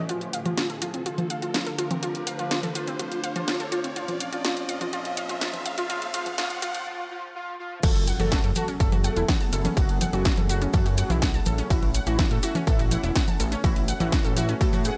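A smooth, detuned analog pad with chorus and sidechain pumping, a background riser and a cloudy, evolving granular pad open this hypnotic, dramatic melodic techno excerpt at 124 BPM, joined by a fat, mellow analog lead with vibrato and dub echo, a lush, bright unison pluck playing arpeggios, and an overdriven techno drum kit of congas, crash, hi-hat, ride and a cracking snare, as filter sweeps on the pad, lead and pluck build toward a brief break before the drop lands at 7.8 s with an impact, a thick, wave-folded analog bass, a distorted, up-front electronic kick and grainy, close maracas over chords moving from F#m to A.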